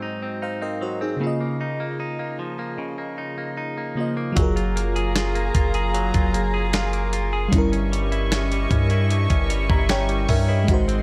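A slow, straight 76 BPM groove in 4/4 carries this tender, smooth contemporary R&B excerpt, where a lush, dreamy FM electric piano with a soft pad layer and chorus opens alongside a bright, twangy clean guitar picking arpeggios through delay, before a gritty, tape-warm sampler-style drum kit with a thumpy kick, a deep sine 808-style bass and a dark, intimate string section playing sustained chords with light vibrato all enter at 4.4 s, moving through chords from Ab7 to Eb7b9/G in a digital ambience.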